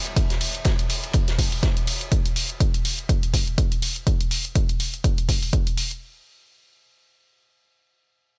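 An electronic hi-hat and a natural acoustic drum kit open this gritty, hypnotic acid house excerpt at 123 BPM in 4/4, with a 56% swing on the 16ths. The hi-hat is analog, dry and up front. The kit sits lower in the mix, offering a ride cymbal and a fat snare from a small room; its cymbals carry sidechain pumping and a high-pass filter, and its snare and room sound are filtered as well. A punchy analog kick drum arrives at 0.2 seconds and becomes the loudest element, up front, dry and direct. The acoustic kit drops out at 2.0 seconds, leaving the kick and hi-hat to carry the groove until the kick stops at 5.6 seconds and the hi-hat follows at 6.0 seconds. The overall sound is close and largely free of reverb, and the piece moves into a new section at 6.0 seconds.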